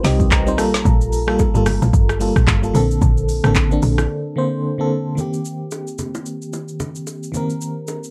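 Amapiano at 111 BPM with a hypnotic, late-night mood, this short excerpt opens on a drop where a mellow FM electric piano with tremolo plays a brief fill in its first 0.9 seconds and then comps through Cm7, Gm9 and Bbmaj9 chords, sitting up front beside a punchy afro-pop drum kit of deep kick, woody snare, crisp hats, rim clicks, handclaps and shaker roughened by vintage 12-bit sampler grit. A percussive log drum bass with a fast attack and decaying notes drives the low end until 4.1 seconds, when a break begins, while ringing acoustic bongos and congas stay in the background. At 5.2 seconds a new section returns to Cm7 under light reverb.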